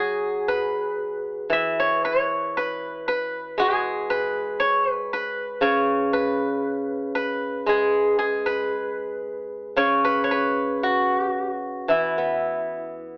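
Heard through a narrow, telephone-like sound with a faint mains hum and light reverb, this pastoral, elegant piece of Chinese traditional music for solo plucked strings features a bright, silvery steel-string zither, played with fingerpicks and placed up front, ringing across a range from C#3 to E5 at a free, rubato 57 BPM in 4/4, tuned to A4 = 438 Hz, for the full 13.2 seconds of this passage cut from a longer work.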